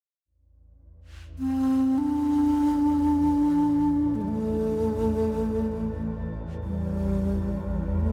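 Floating in free time, this haunting, spacious world meditation music rests on A minor pentatonic. A swarming, tense drone of detuned sine tones enters low at 0.9 seconds with a slow attack and granular, evolving texture, and at 1.4 seconds a breathy, mellow bass flute arrives up front, close-miked with vibrato and tongued notes, its unsteady tone bathed in shimmer reverb and diffuse ambient delay. A long church reverb surrounds this brief excerpt, cut from a longer piece.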